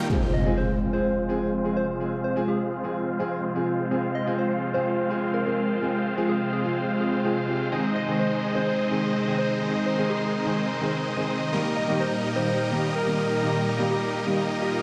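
Played through a big sound system in a bare room, this short cut from a longer euphoric, anthemic EDM track is bathed in a large studio reverb and moves at 126 BPM in F minor, its chords shifting from Fm to Ab at 7.7 seconds and Eb at 11.5 seconds. Huge, detuned supersaw chords sit up front with a filter sweep and delay, while a thick, warbling pad carries sustained chords with chorus and its own filter sweep, and a boxy grand piano with audible action noise adds delayed accompaniment. A round, keys-like FM lead carries the melody with chorus, tremolo and delay from 0.3 seconds, and an electronic impact and swell hits at 0.1 seconds and again at the very end.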